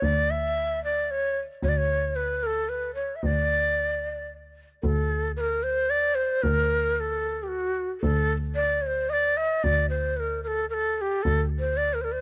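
Festive yet stately, this Persian modal ensemble piece moves at 112 BPM in a straight 3/4, settling into D dastgah homayun from 4.8 seconds. An end-blown reed cane ney carries the melody between F#4 and E5, its breathy, bright tone shaped by tongued notes and vibrato, with a somewhat unsteady delivery. Beneath it, a single bowed double bass stays on D2 with a rich, smooth and even sound, colored by its own vibrato. Both parts sit up front and play together from the start to 12.2 seconds. The sound is that of a dry, close 1970s-style studio recording with light reverb, and the passage is cut from a longer piece.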